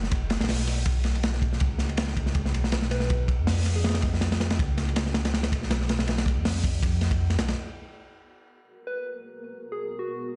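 Heard through a big sound system in a bare room, with large studio reverb and a muffled top end, this cut from a longer drum and bass and jungle piece feels frenetic yet atmospheric at 161 BPM in G# dorian with a light 16th-note swing. A gritty, saturated breakbeat kit with dark cymbals and a tight kick runs alongside a deep, rumbling detuned saw bass with tube saturation until 7.6 s, while a round, keys-like FM lead with chorus, vibrato and dub echo drops in briefly at 2.9 s. The lead then returns over a blurred, granular cloud pad carrying 12-bit sampler grit and a filter sweep as the harmony settles on G#m9.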